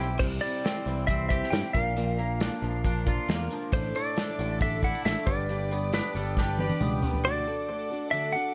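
Folk rock and heartland rock with a hopeful mood, this short piece cut from a longer work is led by a bright, up-front clean lap steel guitar melody with analog delay. Beneath it sit a woody, full-bodied plugged-in acoustic guitar, a twangy electric guitar riff through a phaser, amped picked electric bass, a very quiet reedy electric piano and a tight, up-front drum kit played with bundle sticks. A rich chamber string section and a jingly tambourine join in the background around 3.7 seconds, a pedal steel guitar played with fingerpicks adds volume swells and delay near 5.9 seconds, and a drum fill at 6.4 seconds leads into a brief closing passage on a D chord, set in light reverb.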